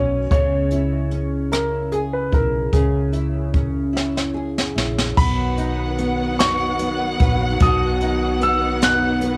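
A romantic, heartfelt six-eight pop ballad in B major at 50 BPM, where a polished baby grand piano carries the melody through cassette tape and tape echo over a double-tracked, fingerpicked nylon-string guitar with audible finger squeak and a round, punchy hollow-body electric bass. An airy, up-front brush kit with dark cymbals and a boomy kick enters at 0.3 s and plays a fill from 3.9 s into the second section at 5.2 s, where the harmony moves from C#m to B. There a distant, lush violin section holds a second line above smooth, bowed string chords, all set in studio reverb with the soft grain of a home cassette recording.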